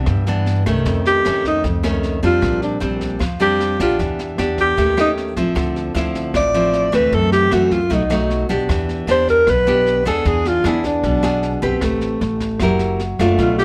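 Woody pizzicato upright bass and a full-bodied, fingerpicked nylon-string guitar whose finger squeaks sit up front open a straight 4/4 bossa nova at 153 BPM, joined almost at once by brushed drums with a boomy kick, rim clicks and a high-tuned snare. At 1.1 s a breathy alto saxophone enters with a mellow, soft-attacked jazz solo touched with vibrato, carrying a smooth, melancholic mood over rich changes that move from Cmaj9 through Em7 and Dm9 to Am9. The dark, rolled-off kit sounds as if played in a small room, and light reverb lends this fragment of a longer piece a gentle sense of space.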